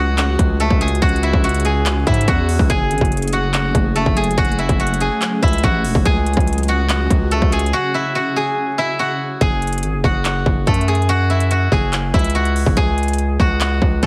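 A silvery, ringing steel-string zither carries the melody up front with a slapback echo, set over an eerie, melancholic half-time trap groove cut from a longer piece. A heavy, saturated 808-style bass and an overdriven drum kit of hard-clipped kick, metallic hi-hats and handclaps drive the track, while a warbling, ethereal pad holds chords in the background until 9.4 s, through a break that begins at 7.7 s. The mix is dry and heavily compressed like a radio broadcast, dusted with vinyl crackle.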